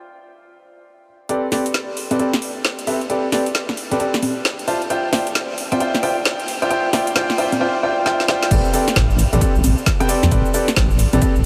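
A swung two-step garage groove in 4/4 drives this moody, late-night fragment, which opens with clear concert grand piano stabs on Dm11, roughened by vintage 12-bit sampler grit, a low-pass filter and analog delay. At 1.3 seconds, as the harmony moves to Am11, an up-front, overdriven garage kit enters with a woody snare, metallic hi-hat, cabasa, congas and crash cymbal, carrying a build-up as a filter sweep works on the piano and ending in a drum fill. The drop at 8.5 seconds brings a punchy overdriven electronic kick and a deep, detuned sawtooth wobble bass with chorus, all set in a dreamy mix soaked in huge ambient reverb.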